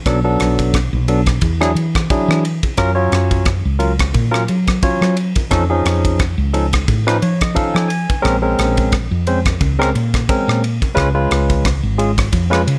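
Nocturnal and intense, this electric jazz fusion excerpt moves at 88 BPM in 4/4 with a gentle sixteenth-note swing, centered on B-flat minor and tuned slightly below standard pitch. A barky, bright tine electric piano carries the accompaniment up front with a clean, direct tone, and it steps forward with a fill from 6.9 to 8.2 seconds. Beneath it, a woody fretless electric bass sounds dark, growly and round, with an amped, hollow-body character. The crisp fusion drum kit, built on kick drum, ride cymbal and rim click, has a punchy kick and an airy, polished studio-room sound placed up front. The harmony travels through rich colors such as Gbmaj7, F7alt and Bbm9 before landing on Db7, and light reverb gives the piece a sense of space across its 12.8 seconds.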